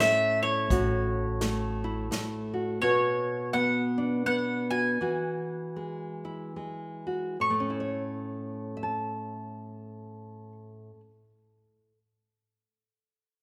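Gentle and peaceful, this short cut from a longer acoustic folk piece moves in an unhurried 3/4 with a lightly swung lilt. A picked bowl-back mandolin carries the melody up front, its double strings giving a warm voice that sings until about 10.5 seconds. Beside it, a fingerpicked nylon-string guitar with fresh strings provides bright, full-bodied accompaniment with deep classical character, continuing to 12.0 seconds. A natural country drum kit with a punchy kick, medium-tuned snare and hi-hat plays only in the opening moments, joined briefly by a woody, growly pizzicato upright bass from 0.7 seconds. The harmony drifts through airy added-ninth chords as the pace slows between 2.8 and 7.4 seconds, before a second section returns home, all set in a light reverb.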